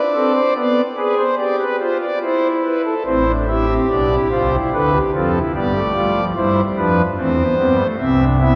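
A pipe organ on thick, romantic foundation stops sits up front in this contemplative, serious excerpt of a baroque-style four-part fugue in C major, moving at 73 BPM in 3/4 through chords such as Bdim7, Am7, Dm and G before settling on a rootless Am/C at 8.0 seconds, all bathed in a long cathedral reverb.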